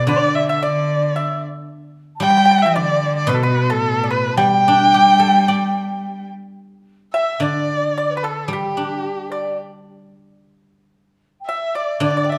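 A warm, up-front erhu carries the melody of this festive, pastoral Chinese chamber piece, bowed by a single player with vibrato and portamento and a focused, smooth top, moving freely in rubato around 110 BPM in a G gong mode. A breathy, mellow xiao sits distant and very quiet alongside it, while a bright, percussive pipa and a silvery, ringing guzheng played with fingerpicks fill out the texture. A close, clear cello adds a bowed line with vibrato until it stops at 6.3 seconds, all set in a recital hall's reverb within this short cut from a longer work.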